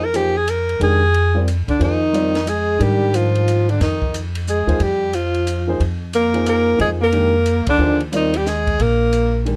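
Spiritual and cool, this brief modal jazz fragment, cut from a longer piece, moves in a swung three-beat waltz feel. A clear alto saxophone carries the melody up front with light vibrato, soft attacks and scooped notes, while a breathy, mellow tenor saxophone enters at 1.7 seconds with a subtoned second line beneath it. The pizzicato upright bass sits prominently in the mix, woody and thumpy with the dark character of gut strings. A warm grand piano supplies short-sustained accompaniment over harmony that shifts between Absus2/F and Fm11, and a compact cocktail kit keeps a dry backdrop of dark cymbals, a high-tuned snare and a punchy kick. The band hits a shared accent at 7.6 seconds, all set in a light reverb.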